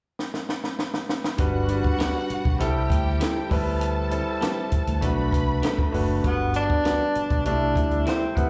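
A compact cocktail drum kit opens this lush, smooth 1970s-style soul excerpt with a dry, tight fill, and at 1.4 s a clear baby grand piano, a round, foam-muted electric bass and a bowed, vibrato-rich violin section with slapback echo come in, joined at 2.0 s by a slightly broken-up electric guitar riff in the background, before a soft-attack, jazz-style tenor saxophone takes the melody at 6.3 s, the live gig heard through the venue's PA with club reverb.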